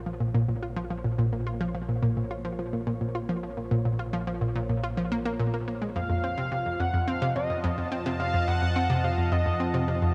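A straight 4/4 pulse at 107 BPM drives this expansive, cosmic stretch of sequencer-driven ambient space music in Bb minor, where a round, detuned analog pluck riff sits up front with tape grit and analog delay, a full-bodied, evolving resonant pad fades in on sustained chords, a mellow pulse-width drone fades in beneath as the bass, and at 6.0 s, as the harmony moves from Bbm to F7, a shimmering, retro pulse-width lead with ring modulation and vibrato takes up a short melody, all set in a huge reverb with a cassette-tape haze.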